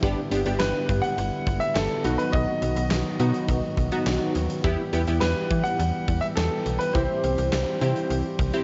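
A clear concert grand piano carries the melody from 0.6 s, intimate and polished with audible action noise and a tape echo trailing its long sustain, over a melancholic yet driving synth-pop groove cut from a longer piece. Beneath it, a snappy FM bass with a metallic attack sits up front, a funky sawtooth polysynth comp with detuned chorus and a moving notch filter sweep pushes the harmony through G, B, Em and C, and a pipe organ principal stop holds smooth baroque-voiced chords with a hint of chiff. A huge arena drum kit drives it all with a fat snare, punchy kick, hi-hat and handclaps, and the home cassette recording gives a dull, lo-fi sheen with moderate spring reverb and small-room ambience.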